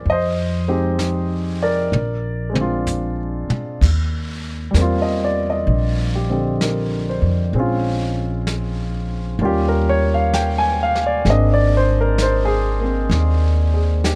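A gentle swung 4/4 pulse carries this romantic, late-night jazz ballad excerpt, where a natural, up-front upright piano and a woody, pizzicato upright bass with steel strings move through Fm7 and Bb7 to Eb69, then on through Bbm7, Eb7 and Abadd9, while a smooth vintage brush drum kit with a punchy kick and a rolled-off top plays a fill from 1.9 to 3.8 seconds, in a close, detailed and nearly dry recording.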